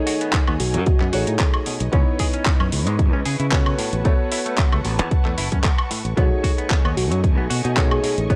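A dry, gritty cassette-tape sound frames this sunny, groovy nu-disco excerpt, which moves with a light swing in 4/4. A punchy electronic kick sits up front beside a bright, growly fingered electric bass coloured by transformer saturation, which enters at 0.5 seconds, while a pop drum kit adds handclaps, woodblock and metallic hi-hats. An open-sounding baby grand piano carries the accompaniment through chords such as B13, C#m9 and A69, and a twangy, clean electric guitar, recorded direct and treated with lush chorus, plays a riff in the background. Behind them, a dark, veiled violin section played con sordino holds sustained bowed chords with vibrato and sidechain pumping. A round, soft synth lead layered with a sub octave and set with chorus and tape echo states the melody briefly at the start and returns at 6.2 seconds.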